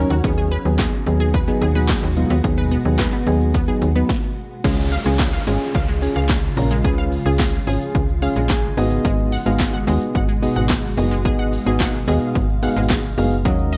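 Soft, round electric-piano-like synth keys with chorus, a lush detuned unison pluck trailing tape echo and a snappy, metallic slap-like FM bass open this bittersweet yet confident dance-pop excerpt in G# dorian at 109 BPM, all pumping against a punchy, overdriven analog drum machine of kick, snare, claps, hi-hat, shaker and crash while a cloudy, blurred granular pad drifts in the background, and after a brief stop the groove moves from G#m7 to C# as a distant downlifter sweeps in at 4.6 seconds, a very quiet, jingly tambourine joins at 5.2 seconds and the keys take a fill at 7.9 seconds, the whole mix carrying the warbling pitch drift of worn cassette tape.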